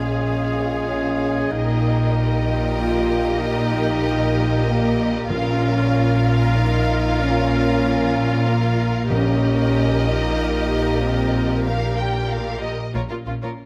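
Cinematic and dark, epic in free time, this fragment of a longer piece sets lush, expressive violins carrying the melody over a background second violin line, smooth, even violas, mellow French horns and background woodwinds holding chords above a Bb bass from bright, up-front double basses and rich cellos, while very quiet, hard-mallet timpani strike at 5.3 seconds as the harmony turns to Bb minor and again at 9.1 seconds over Eb/Bb, all heard in a moderate scoring-stage reverb.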